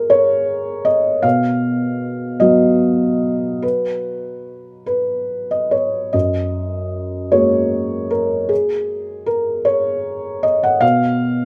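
Peaceful and intimate, this short cut from a longer neoclassical minimalist piece sets a solo felt-muted upright piano, soft, dark and up front, in a rubato 6/8 at 47-53 BPM in F# major, ranging from F#2 to F#5 over F#add9 and B harmony until the chords fall away at 10.8 s, all heard in a small room ambience with a rough home demo mix.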